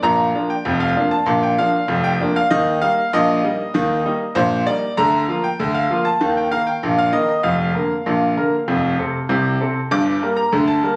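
A bright grand piano plays alone through this short, playful ragtime excerpt in Bb major, moving at 97 BPM in a straight 2/4 with a lively bounce, its brilliant, smooth tone carrying a vintage character and long sustain as it sits up front across a range from F1 to D6. The harmony travels from Bb through Eb, Bb/D and F before touching Gm near 9.9 seconds. A wet studio reverb and compression color the sound, which has the feel of a phone capturing the instrument in the room.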